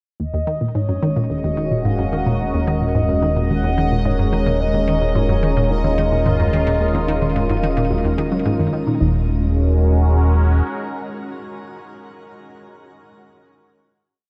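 A straight 4/4 pulse at 109 BPM drives this short, hypnotic and mysterious piece of ambient, sequencer-driven space music in Eb minor: a fat, thick analog bass holds the root up front, a juicy, squelchy blip pluck repeats an 8-step riff, and a soft, round pluck cycles a very quiet 10-step arpeggio loop that drifts against the bar. Above them a bright, detuned resonant pad moves through slowly shifting chords, a mellow horn-like lead sings a free melody with vibrato through tape-tinged chorus, shimmer and delay until 8.4 s, and a bubbling texture holds one high note under random filter steps. The mix sits in a huge ambient reverb, the final Eb minor chord arrives at 9.0 s, and the pad rings on alone after the bass stops at 10.6 s.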